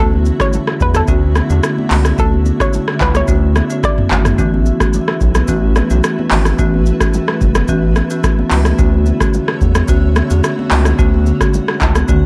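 A round, deep analog bass sits up front in this joyful, sunny afrobeats excerpt, driven by a booming, overdriven analog drum machine with a deep kick, metallic hats, handclaps, rim clicks, shaker and toms, while a mid-forward marimba plays warm accompaniment over Dmaj7 and A6 chords beneath a blurred, evolving granular cloud pad with sidechain pumping, with very quiet ringing congas, a hollow, nasal square pluck carrying a bouncy chorused and delayed melody until 4.2 seconds, and a drum fill at 12.1 seconds in a dry mix.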